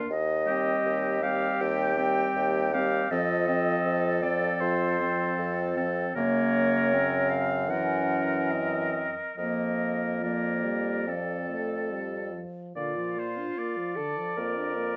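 Rubato 4/4 at 69-82 BPM gives this slow, romantic classical movement for wind quintet in Bb major a tender, warm, breathing pulse. A pure, straight-toned flute carries the tongued melody over an oboe second line with light vibrato, while the clear clarinet and mellow French horn supply accompaniment and the bassoon sits present and up front on the bass. Heard in a moderate large-studio reverb, this passage from a longer piece moves from Cm/Eb through F7 and Gb7 before a new section arrives on Bb at 12.8 seconds.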